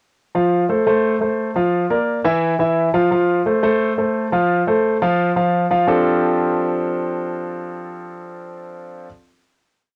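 A straight 4/4 pulse at 174 BPM drives this lively, sophisticated jazz miniature in F major, played by a solo concert grand piano from 0.3 to 9.1 seconds with a piano montuno in octaves over F and Bb, a brief chordless passage, and a return to F. The intimate piano is up front, with deep bass, long sustain, audible action noise and a polished cassette-tape tint, set in a light reverb that suits its homemade cassette origins. The piece closes on a ringing F6/9 chord held from 5.9 seconds.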